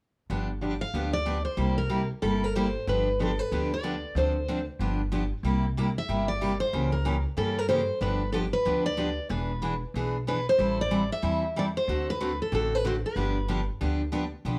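A bright, picked steel-string acoustic guitar carries the melody from 0.8 seconds, its plate reverb and audible finger squeak giving it a lively, up-front presence in this playful, swinging excerpt of acoustic string jazz manouche. Beneath it, a full-bodied dreadnought guitar picks out accompaniment through dominant and diminished chords while a woody, thumpy pizzicato upright bass on gut strings anchors the low end. The whole track sits in a moderate studio room and carries the worn, warbling pitch drift of old cassette tape.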